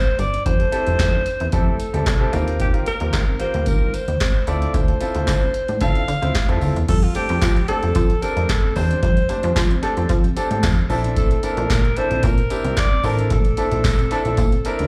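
A breathy alto saxophone and a mellow, dark electric guitar open this smooth, danceable slice of early-eighties boogie funk, the sax carrying the melody with light vibrato and a subtone jazz touch through slapback and tape echo while the clean, compressed guitar riff sits in the background. At 0.2 seconds a booming analog drum machine arrives up front with a deep kick, crisp snare, handclaps, metallic hi-hats and crash cymbal, joined by a plucky, punchy analog bass built from sawtooth, square and sine tones with ring modulation and a wave-folded filter pluck. A very quiet, jingly tambourine adds close, dry shimmer. From 0.6 seconds a clear baby grand piano comps with long sustain and its own slapback echo, moving through rich chords such as Fmaj9, Dm9 and Bbmaj9#11. Caught as a live club gig through the venue's PA with a touch of room reverb, the passage shifts into a second section at 6.9 seconds and is cut from a longer performance.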